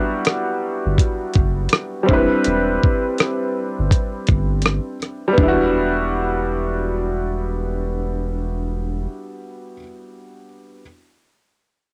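Lo-fi hip hop at 82 BPM in E minor with a swung 16th feel, nostalgic and melancholic, moving from Em9 to Cmaj9/E and back in this fragment of a longer piece. A bright, woody upright piano with audible action noise and a slightly detuned, worn, intimate character carries the chords through cassette tape and a low-pass filter, while a gritty, compressed sampler-style soul kit with a thumpy kick, hi-hat, rim click and toms adds 12-bit crunch until it stops at 5.6 seconds. A deep, round dub sub bass with a fast attack and sustained tone sits up front from 0.9 to 9.1 seconds, and the home cassette recording carries light reverb.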